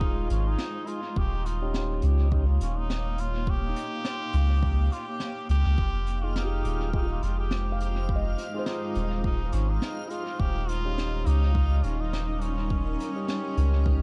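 A buzzy, close-miked trombone with a metal mute carries the melody through dub echo over a hazy, spacious bed of ambient dub at 104 BPM in 4/4, with a loose swing. A round, up-front sub bass and a deep, tape-warm electronic kick anchor the groove, joined from 0.3 s by a vintage brush kit on hi-hat and snare, while a cloudy granular pad holds sustained chords moving between Fm7 and Eb7. A mellow tonewheel organ adds stabs through chorus vibrato and a slow rotary speaker, dropping out at 2.5 s and returning at 6.2 s, as a soft handpan plays ringing arpeggios and a reversed, swelling texture drifts in the background, all under a dark studio reverb.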